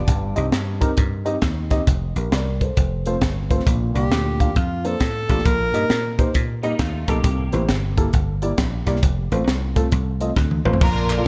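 A punchy, foam-muted slap bass and a crisp fusion drum kit with a high-tuned snare kick off this jubilant, hopeful uptempo gospel excerpt at 134 BPM, swung in 4/4. A dark, mellow concert grand piano moves through chords from Cm/G to Bb, C7 and F, and a breathy, close-miked tenor saxophone takes a brief jazz-style solo with scooped notes at 4.0 seconds. A clean, compressed electric guitar with ensemble chorus sits in the background. After a drum fill, a lush, bowed string section with vibrato enters at 10.8 seconds, and saturated group handclaps follow moments later at 11.1 seconds, all in a lightly reverberant, warm mix.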